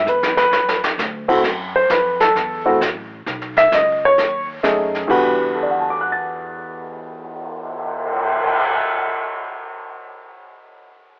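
Heard through a lo-fi home cassette with a thin, telephone-like quality and light reverb, this short cut from a longer swinging jazz piano trio has a cool feel. An intimate, up-front baby grand carries the melody with short sustain and audible action noise, over woody, thumpy pizzicato upright bass and a roomy, distant brush kit with dark cymbals and a punchy kick. A drum fill comes in at 0.1 s just after piano and bass begin, the harmony moves from Dm6 through F#m7 and B13 to Em9, and the piano rings on alone after the drums stop at 8.7 s.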